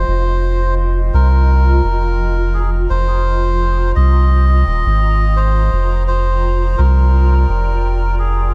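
An echo-heavy, reverberant mix frames this hazy, meditative slice of ambient dub in F dorian at 85 BPM, with a light swing on the sixteenths. A deep, round sub bass sits up front beneath a cloudy, granular pad whose slow-blooming sustained chords move from Fm9 to Gm/F at 5.7 seconds. Over them, a reedy, nasal, vintage-sounding melodica carries the melody through dub echo for the full 8.5 seconds.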